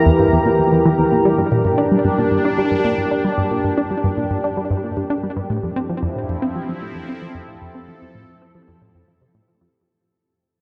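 Ambient, sequencer-driven space music at 113 BPM in a straight 4/4, hypnotic and cosmic, drifting from Edim through Gm to Fmaj7 in a brief excerpt cut from a longer piece that fades out from 1.3 seconds onward. A tight, driving sequenced synth riff with a detuned sawtooth pluck and a mellow edge runs up front through chorus, phaser and tape echo, while a sweeping resonant pad sustains bright, evolving chords with a slow filter swell, ring modulation and chorus. The dark production sits in a huge, wet reverb with a long 6.9-second tail.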